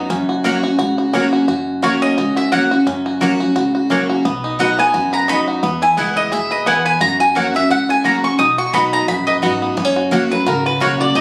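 A swung eighth-note feel at 174 BPM in 4/4 drives this rustic, driving bluegrass cut, which is taken from a longer piece and moves through F#, B and E before settling back on F# as a new section begins at 9.8 seconds. A bright, full-bodied dreadnought acoustic guitar sits up front with picked accompaniment, while a twangy, percussive banjo played with fingerpicks plays arpeggios alongside it. Down in the background, an upright bass with steel strings gives a thumpy, dark pizzicato foundation. One picked mandolin adds double-string stabs, and a second mandolin enters at 1.8 seconds to carry the melody high above the band, both with a woody acoustic tone. The recording has a phone-in-the-room quality, with studio ambience and a moderate reverb.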